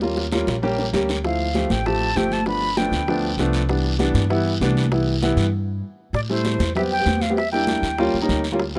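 Sophisticated and lively, this short cut from a longer Afro-Cuban jazz piece moves at 196 BPM in a straight 4/4, centred on C major. An up-front grand piano with a natural tone carries the accompaniment through chords such as Dm7, G7 and Cmaj7, while a woody, thumpy upright bass with gut strings plays pizzicato in a dark low register. In the background, high-tuned congas with a thick skin sit in a live room, and close, dry, low-tuned bongos are struck with soft hands; a raspy, compressed and saturated guiro adds grit. The piece opens with a drum fill, and a breathy, bright concert flute enters at 1.2 seconds with a tongued, straight tone that sounds unsteady. After a stop around 5.5 seconds, the flute returns at 6.1 seconds over Am7 and Em7b5 harmony. The overall sound is that of a rough home demo with audible studio ambience.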